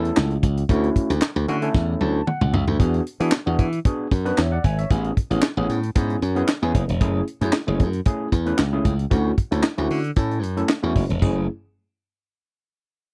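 A straight 4/4 groove drives this slick, late-night slice of early-eighties boogie funk, cut from a longer piece. The acoustic drum kit sits up front with a natural small-room sound, pairing a high-tuned snare and tight kick with hi-hat, handclaps, toms and splash cymbal. A glassy slap bass, punchy and direct, anchors the low end, while an overdriven tine electric piano plays accompaniment through a combo amp, its barky, gritty tone bathed in lush chorus. Drums and electric piano share a fill from 1.7 to 2.8 seconds, leading the harmony from rootless F#m7 and Dmaj7 into a stretch moving through E7, Amaj9, F#m7 and Dmaj7 before returning to F#m7 at 11.2 seconds. The recording is dry and close, with a 1970s-style studio character.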